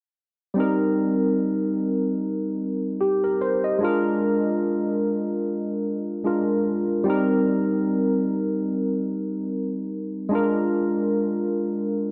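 A barky, lightly overdriven tine electric piano plays alone through a combo amp with analog chorus, bright and up front in a dry, close 1970s-style studio sound with light reverb, carrying a bittersweet, longing reggae groove at 74 BPM in C minor with a swung sixteenth feel, moving between Cm7 and Bb7 from 0.5 to 12.1 seconds in this brief cut from a longer piece.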